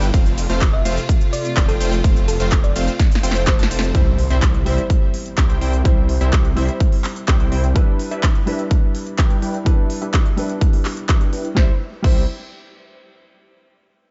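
A straight 4/4 pulse at 126 BPM drives this triumphant, euphoric festival progressive house excerpt in C major, opening on a drop where a punchy, up-front electronic kick and a crisp big-room kit with claps, shaker and ride push under a detuned supersaw stab riff, a thick, menacing saw bass and a lush string section in the background, all three pumping against the kick, while a round, tine-like synth pluck with a warbling, vintage character plays a gentle melody from 0.7 s. A drum fill leads to 3.9 s, where a very quiet impact lands, the strings drop out and a natural grand piano takes over the accompaniment with delay as a filter sweep runs across the supersaw. The chords move from F to C to G6 and back to C at 11.6 s, where the bass returns briefly, all in a dry, dark-toned mix.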